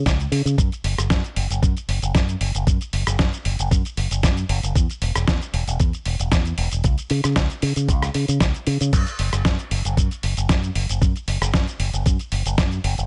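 A bright, punchy fingered electric bass with an envelope filter opens this sensual, groovy nu-disco excerpt, quickly joined by a gritty, compressed sampler-style soul kit of fat snare, hi-hat, rim click, shaker and crash, plus a thumpy electronic kick, all sitting up front in a dry, dark-topped mix with a lightly swung feel.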